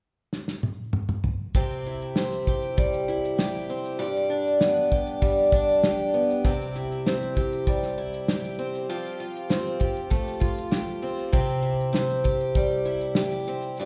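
Acoustic pop with a sunny, easy-going mood, cut from a longer piece, opening with a cloth-damped drum fill from 0.3 seconds on a thuddy kit of kick, shaker, snare and toms, its tight kick and rolled-off top sitting up front. At 1.6 seconds a picked twelve-string acoustic guitar enters, bright and shimmering with octave-doubled strings, a boxy archtop body and audible finger squeak, picking through C, G and Fadd9. The whole recording carries the moderate reverb of a church or concert hall.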